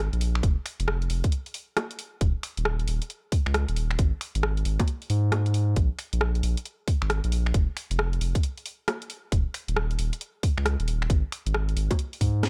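UK garage two-step excerpt at 135 BPM with a swung 16th feel and a late-night, moody air, built on a deep, thick saturated sine sub bass from the start, a garage kit entering at 0.1 s with cracking snare, bright hats, bongos, finger snaps and rim clicks in a small room, and a tight, layered electronic kick arriving at 0.4 s, all three parts sitting up front.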